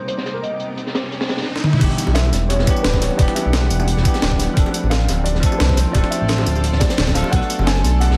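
This excerpt of melancholic, lush liquid drum and bass at 174 BPM opens with a dark, boxy baby grand piano melody over a bell-like tine electric piano, both carrying digital delay, beneath a shimmering, ethereal ambient pad with chorus and sidechain pumping, while a crunchy, filtered breakbeat kit sits in the background and a riser enters at 0.3 seconds. A drum fill at 1.6 seconds brings in a gritty, pitched-up sampler-style breakbeat kit with crash, tambourine and toms, and the drop lands at 1.8 seconds with a smooth, up-front synth bass with tube saturation, a knocking layered electronic kick, and very quiet, distant bongos. The chords move from Cm7 through Em7 and Dm7 to Bm7, set in a light small-room ambience.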